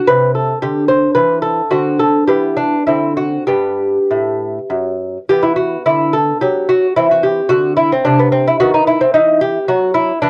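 A classical, baroque-style dance for solo lute, this short excerpt is cut from a longer piece and carries a grave, introspective mood. In 3/4 time at a flexible 96-113 BPM, the rubato phrasing lets the pulse breathe as the music starts in G major and turns toward E minor at 5.3 seconds. The lute sounds delicate and up front, its fingerpicked gut strings ringing out in doubled courses, some of them in octaves, across a range from F#2 to C5. Harmonies move from an opening Cmaj13 through D7 and Em before settling on G, then shift to a bare E5, a Cadd9(#11) and a closing B/D#. A light reverb surrounds the instrument, and the cassette tape on the lute lends this home recording an intimate, slightly worn character.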